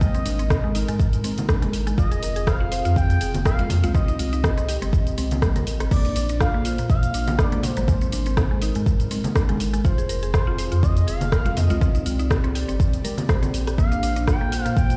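A deep, up-front electronic kick, a drum kit of crash, hi-hat, rim click and shaker, a round sine sub bass with sidechain pumping, a woody FM mallet-like pluck playing arpeggios with chorus and dub echo, a dark, detuned analog pad in the background, and a smooth, expressive sawtooth lead with vibrato and dub echo open this hypnotic afro house piece at 122 BPM in C minor, joined by bright, saturated congas at 0.3 seconds, over an Ab, Fm, Cm, Bb progression heard as if through a big sound system in a bare stone room.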